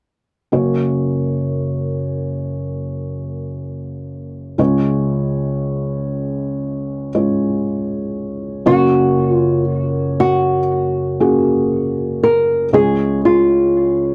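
A dry, close 1970s-style studio sound with light reverb frames this tender, heartfelt pop excerpt. A felt-muted upright piano carries the accompaniment from 0.5 seconds, its tone dark and intimate with audible action noise. At 8.7 seconds a small, thumb-plucked nylon-string guitar enters up front with the melody, touched by tape echo.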